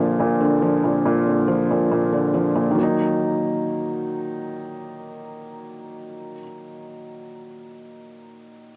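A felt-muted upright piano opens the recording, sitting up front with a soft, intimate tone and the audible noise of its action beneath the thick felt. This is a tense, dark hip hop fragment cut from a longer piece, moving at 140 BPM in 4/4 with a half-time feel, in Eb harmonic minor and tuned to A4 = 439 Hz. As accompaniment, the piano stays between Bb2 and Eb4, resting on a Bb chord before shifting to Eb minor at 2.8 seconds. A low-pass filter and cassette tape treatment dull its mellow voice further. Light studio reverb surrounds the piano, and the whole recording carries the character of a home cassette heard through a small speaker until the piano stops at 8.7 seconds.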